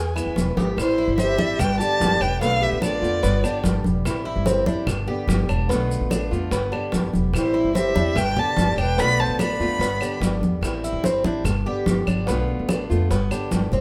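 A straight 4/4 groove at 146 BPM drives this danceable, nostalgic excerpt of Cuban son and guajira, with congas close and dry under soft hands, tight high-tuned bongos and woody claves set back in a larger room, and grainy maracas adding a light rustle. An up-front upright bass with gut strings gives a thumpy, dark pizzicato foundation, while a Cuban tres plays metallic, double-string arpeggios and a boxy parlour-style steel-string guitar fingerpicks accompaniment with audible finger squeak. The bowed violin carries the melody up front, singing with vibrato, portamento and a soft attack. A hollow, airy jazz flute with crisp chiff and rolled-off highs shadows it as a second line. The two lead voices play from the start, drop out at 3.6 seconds, return at about 7.3 seconds, and fall away again at 10.2 seconds, leaving the rhythm section to cycle alone through Am7, G and Bm7b5 to the end. 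Short drum fills mark the opening and close, and the whole sits in a moderate studio reverb.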